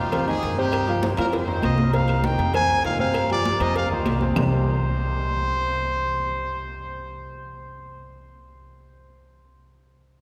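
A fiery, driving salsa cut from a longer piece opens with a brilliant, tight horn section stating the melody over a clear, worn concert grand piano and a thumpy, woody upright bass played pizzicato up front. Percussion joins almost at once: ringing, high-tuned congas and metal-shell agogo bells and timbales sit in the background, while round, low-tuned cowbell and bongos and woody claves stay very quiet. A drum fill carries the opening phrase forward, and at 1.6 seconds a punchy solo trumpet with a smooth top takes over the melody up front as the horns drop out. The percussion stops at 4.4 seconds, leaving the piano's short-sustained chords and the dark, gut-string bass to drive on under the trumpet. Minor-key changes cycle through Fm7, G7sus4 and F5 back to Cm, and the whole performance rings in the long, wet reverb of a church or concert hall.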